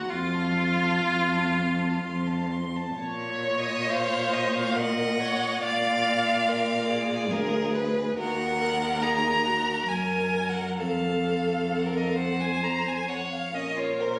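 In a rubato 3/4 at 61-72 BPM, this melancholic, solemn slow romantic movement for string quartet in Bb minor, cut from a longer piece, sets a focused, vibrato-rich first violin on the melody above a smooth, even second violin line and a viola accompaniment with a smooth top, while an up-front cello with soft attacks and expressive portamento carries the bass from 0.1 s through harmonies moving from F to Bbm, Bb7 and Ebm, all heard through a phone in the room with a wet recital-hall reverb, studio reverb and compression.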